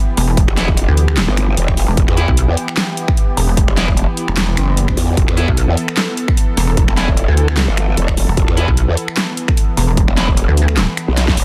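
A swung, half-time heavy wobble dubstep groove drives this chaotic, menacing fragment, where a punchy electronic kick and a layered kit of finger snaps, handclaps, metallic hi-hats and a huge soft-clipped snare back two up-front basses, a pulsing, detuned pluck wobble with chorus and overdrive and a growling, formant-filtered growl bass that is distorted and bright, while a lush, airy sawtooth pad holds sustained chords with phaser and sidechain pumping, a picked, distorted electric guitar adds tape-echoed stabs in the background, and a drum fill lands at 11.2 seconds in a dry, dense, heavily limited mix.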